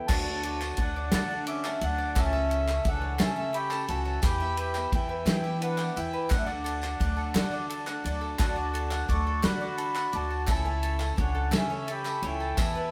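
A reedy accordion melody, a mellow trumpet line with light vibrato and a very quiet fingerpicked steel-string guitar open this anthemic, nostalgic indie folk excerpt in D major at 58 BPM in 6/8; at 0.1 seconds a punchy natural country drum kit, crisp background handclaps, a faint jingly tambourine, a growly upright bass, a shimmering octave-doubled twelve-string guitar and a bright mandolin playing arpeggios join in, the steel-string guitar stops at 2.2 seconds, and the band, heard live in one room with light reverb, moves through D, A/C# and Em.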